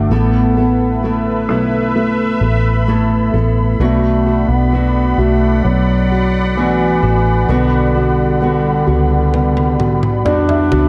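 A mellow bass clarinet carries the melody of this tender, heartfelt pop ballad with light vibrato, subtone and scooped notes, sounding distant and roomy in a jazz style, with a touch of delay on its phrases. Beneath it, an intimate, vintage upright piano plays woody, slightly detuned accompaniment with audible action noise and long sustain, while a fingerpicked jumbo steel-string guitar adds full-bodied arpeggios. A bright sawtooth pad with chorus holds airy, evolving chords with a slow attack, filter swell and a noise layer. Up front, a foam-muted fingered electric bass sounds round and punchy. The harmony moves from Asus2 to Bm7 to Gmaj7/B, and at 9.3 seconds big-room acoustic toms enter with a fill, joined by a piano fill at 9.8 seconds before the excerpt ends at 10.9 seconds. The production is dark and warm, with light studio reverb.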